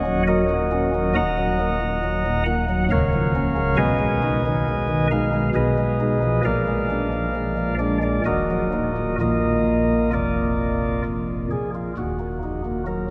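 Drenched in a long, wet cathedral reverb and heard from further back in the room, this short excerpt of a grave, solemn classical chorale features a solo chamber organ on soft flute stops, its warm chamber voicing touched by chiff. At 67 BPM in an unevenly paced 3/4, the organ spans Db1 to Bb5 in Eb minor, tuned to A4 = 437 Hz. Its harmony moves from Ebm7 through Ebm, Bbm/Db, Abm/Cb and Bb7, returns to Ebm and passes through Bb, then settles on Ebm at 12.0 seconds as a brief new section begins.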